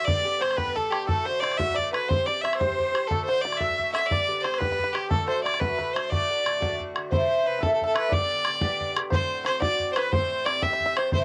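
A bright, focused fiddle leads this cheerful, lively Celtic jig up front, its light vibrato colored by cassette-tape grit, while a tight, damped bodhran drives just as close in a vintage, band-limited sound. Behind them a reedy accordion with slow beating and tape echo hums in the background, a very quiet, twangy fingerpicked banjo adds a percussive second line, and a metallic, double-strung bouzouki picks out the chords. The dry home-cassette recording shifts to a new section at 7.1 s and is cut from a longer performance.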